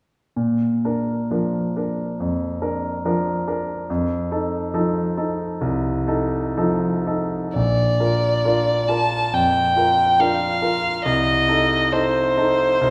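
The pulse moves freely at about 67 BPM in 4/4, with uneven, rubato beats that give this Romantic classical duo a tender, serene feel in B-flat major. A clear concert grand piano opens alone at 0.4 seconds as accompaniment, its polished tone reaching down to a deep bass and sitting up front with a short sustain. The harmony moves from Bb to F7 before returning to Bb as a single violin enters at 7.6 seconds to carry the melody in its upper register. The bowed line is rich, smooth and even, with a vibrato-coloured, smooth top, and it stands up front over the keyboard, a touch louder than the piano. An Adim/C chord arrives near 11.1 seconds, and both instruments play on to 12.9 seconds, the end of this short passage cut from a longer work. A wet recital-hall reverb of about 1.5 seconds surrounds the pair with the air of a church or concert hall.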